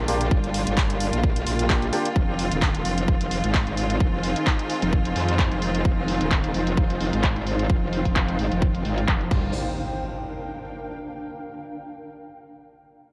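Swaggering and aggressive, this bass house cut moves at 130 BPM in 4/4 with a 16th-note swing, set in G phrygian and moving from Gm7 to Fm7 before returning to Gm7 at 9.3 seconds. Up front, a metallic FM wobble bass with a fast attack carries the low end, thickened by chorus and tube saturation and tightly compressed, while a punchy, layered electronic kick drives the beat. A house drum kit adds crash cymbal, handclaps and hi-hat, overdriven and re-recorded in a large room, with its hats, snare, cymbals and room tone filtered dark. Above them, a bowed studio string section holds sustained chords with vibrato and a smooth top, and a clear, vintage grand piano fires short stabs into a dub echo during the opening two seconds. A cloudy, detuned granular pad drifts mellow in the background, and the strings, bass, piano and pad all breathe with sidechain pumping. After the strings, bass and drums stop around 9.5 seconds, only the pad and an electronic impact remain, all set in light digital ambience.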